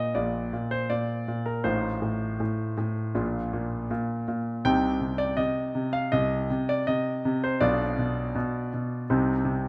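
A bright concert grand piano carries this playful, elegant classical-period sonatina alone, its brilliant, polished tone ranging from deep bass at A1 up to G5 with a present, up-front sound and short sustain. In Bb major at 81 BPM in 4/4, the playing moves with a flexible rubato through chords of Bb, F7/A, Cm and Bdim, ending on Cm at 9.1 seconds. Close, detailed microphones capture the instrument within a moderate recital hall reverb, and this short passage is cut from a longer piece.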